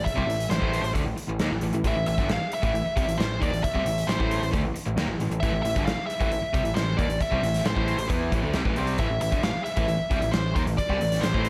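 Driving and brooding, this classic rock excerpt rides one unchanging chord as a nasal, overdriven lead guitar with a parked wah sings its melody up front, backed by crunchy and raw garage guitar riffs in the background, a growling overdriven bass, and a bright, gated 80s drum kit in a stone room with a punchy kick and medium-tuned snare that enters at 0.1 seconds, all in a small, lightly reverberant room.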